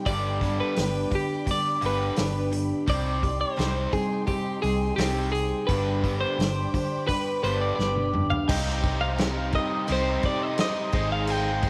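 A clean, compressed twelve-string electric guitar carries the melody up front through spring reverb in this dusty, reflective folk rock and heartland rock excerpt at 86 BPM, set over a shimmering, octave-doubled picked acoustic twelve-string, a bright, overdriven, double-tracked stack guitar riff, a dark, round hollow-body bass, a small-room acoustic drum kit played with bundle sticks whose fill at 7.8 s leads the music into C minor at 8.5 s, and smooth bowed strings with vibrato in the background, joined at 8.5 s by a very quiet, reedy, barky electric piano.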